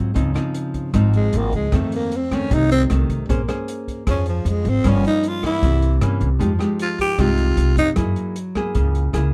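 Set at 154 BPM in a straight 4/4, this smooth, wistful bossa nova in F minor, cut from a longer piece, pairs fingerpicked classical nylon-string guitar with old strings and thumpy, woody pizzicato upright bass up front, adds a small-room jazz kit of hi-hat, rim click and boomy kick from 0.2 seconds, and features a raspy, growling tenor saxophone with light vibrato and scooped notes soloing from 1.2 to 7.9 seconds through plate reverb over chords such as Dbmaj9, Bbm9 and C7b9, in a dark, dry production.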